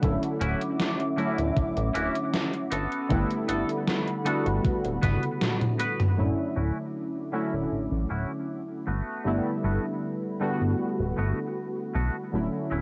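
This dreamy, faded vaporwave excerpt opens at a slow 78 BPM with warbling, detuned lo-fi synth keys, a mellow tape-like pad, a glossy, nasal chorused synth bass, a thumpy overdriven kick and an up-front gated 80s drum machine with a gated-reverb snare drifting between Dmaj9 and Gmaj9, before a clean, twangy electric guitar riff enters at 0.4 seconds, the drums play a fill from 5.0 seconds and then fall away, and a filter sweep washes over the pad from 6.2 seconds, all through a hazy cassette sheen and light reverb.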